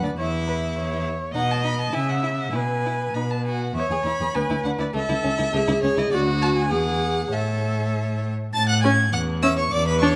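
A rich, smooth first violin carries the melody from a distance in this cheerful, spirited excerpt of a quick classical-period string quartet movement at 101 BPM in 2/4 with a rubato feel, alongside a focused second violin on the second line, a clear viola in accompaniment and an even, up-front cello bass, all bowed with vibrato and captured by close, detailed microphones in light reverb as the music moves from E major to A major at 6.1 seconds.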